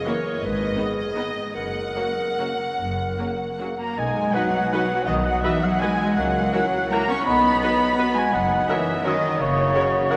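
A clear, intense cello section anchors this elegant, festive orchestral ballroom waltz fragment in B major, swaying in 3/4 with rubato between 137 and 183 BPM, as a distant, lush violin section carries the melody over a soft-attacked, expressive second violin line, a very quiet viola accompaniment, tight, mellow French horn chords and a smooth, rich double bass, while a close-miked clarinet plays a second line until 3.8 s, when a pure, wooden baroque flute and a roomy oboe take it up and a light-vibrato bassoon joins the accompaniment at 4.0 s, the whole ensemble set in a wet cathedral reverb.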